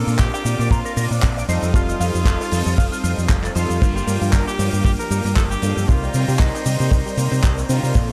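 A bright tenor saxophone with light vibrato carries the melody of this groovy, sensual nu-disco passage at 116 BPM, its pop-style tone roughened by vintage 12-bit sampler grit and tape echo. Alongside it, mellow synth brass built from detuned sawtooth waves plays the accompaniment through chorus, phaser, cassette tape coloring and a filter sweep. A lush, airy unison pad holds sustained chords in the background, pumping with the sidechain. A dark, round fingered electric bass sits up front with a punchy, direct tone, joined by a dry, tight kick and a damped 70s drum kit with a rolled-off top, handclaps, hi-hat, shaker and crash cymbal touched by tape echo. A clean, twangy electric guitar run through an envelope filter picks a riff in the background until 3.6 seconds, and from 3.8 seconds an analog pluck with a sub octave and short decay plays arpeggios. The chords move from Bb through F7 and Gm7 to Cm7 over a swung sixteenth-note feel, set in a small room ambience with an echo-heavy mix.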